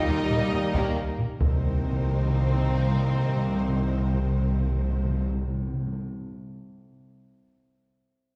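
Dramatic and epic, this short cinematic orchestral cue moves in an asymmetric 7/8 metre, cut from a longer film-score passage. A bowed violin section carries the melody with smooth vibrato, joined in the same register by an airy, soft-attacked flute ensemble in the background playing a second line, while a second violin line and a lush, close viola section fill in beneath. Present French horns and a dark, very quiet trombone section hold sustained chords over a bass of bowed cellos and a clear, distant double bass section, moving from Eb to C minor 7 at 1.4 seconds. Up-front taiko drums struck with hard sticks drive the opening until 2.3 seconds, and a close, dry timpani on calf heads with hard mallets enters at 1.4 seconds and rings on to the end. A wet scoring-stage reverb places the orchestra further back in the room.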